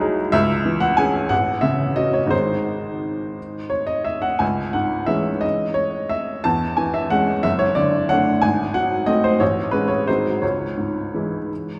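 Bathed in a wet concert-hall reverb and heard from further back in the room, this wistful, nostalgic classical piano waltz in C# minor finds a woody, intimate upright piano playing solo in a rubato 3/4 at 162-194 BPM, spanning F#1 to A5 with its action noise audible, as harmonies such as G#7b9 and Amaj7 lead back to C#m in this 11.8-second cut from a longer piece.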